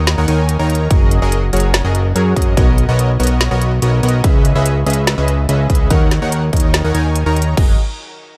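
A detuned supersaw stab and a fat, sawtooth-edged analog bass open this lush, euphoric future bass excerpt together, already in the middle of a drop at 144 BPM in a half-time 4/4 feel. The stab plays an airy, evolving riff with a noise layer and a filter sweep, pumped by sidechain compression and trailed by tape echo. Beneath it, the thick, detuned bass sits up front with a fast attack and sustained, mellow body, wave-folded and also carrying a filter sweep and sidechain pumping. A trap kit with a woody snare, crisp hats and crash cymbal enters at 0.1 seconds, and a layered, punchy electronic kick arrives at 0.9 seconds, tape-warm and placed up front. The harmony moves through D#m7, F#6, Bmaj9 and C#m7 before returning to D#m7 and F#6, all in F# mixolydian. The production is dark and warm, set in a digital ambience.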